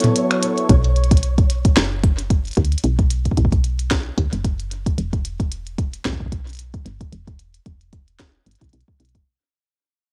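Intricate and glitchy, this IDM excerpt at 112 BPM in E dorian with a light 16th-note swing opens with a brief break of a smooth, detuned, chorused analog pad holding sustained chords beside a flickering, grainy granular texture and a tape-echoed kit of finger snaps, clicky hats, tiny snare and toms, then from 0.7 s a woody, round, dark FM bass with tube saturation and a filter sweep joins a soft, up-front electronic kick in a small room as the piece fades out.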